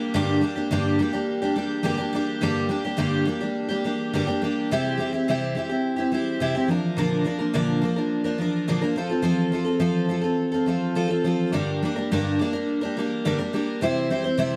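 Rock in G dorian at 105 BPM, this short excerpt cut from a longer piece carries a dusty, wistful mood in a straight 4/4 feel. A lone picked twelve-string acoustic guitar plays throughout, sitting up front with a full-bodied, jumbo tone and a shimmering, octave-doubled sparkle. Finger squeak adds a close, human touch to the playing, which spans from G2 up to C5. The harmony moves through Gm, C, Bb and F before returning to Gm at 11.5 seconds and C at 13.8 seconds. A light reverb gives the guitar a gentle sense of space, and a brief opening section gives way to a longer second passage at 2.4 seconds.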